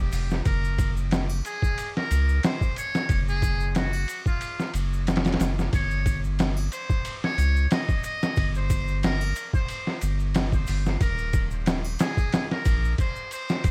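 A metal-muted trumpet carries a jazz-style solo through this dark, hypnotic trip hop excerpt, entering at 0.5 seconds with a buzzy, thin tone, a touch of vibrato and punchy, forceful phrasing that sits distant and roomy, roughened by vintage 12-bit sampler grit and tape echo. Beneath it, a sampler-style drum kit sits up front, compressed and pitched down, with a thumpy kick, a medium-tuned snare, hi-hat and ride cymbal, all carrying a gritty, tape-softened character and a slight swing on the sixteenths. A soft dub sub bass, deep and round with sustained notes, anchors the low end from the very start. An egg shaker and triangle add a saturated, acoustic texture far in the background. Vinyl crackle hovers over a dry, close sound, and the harmony moves to a suspended chord at 5.7 seconds.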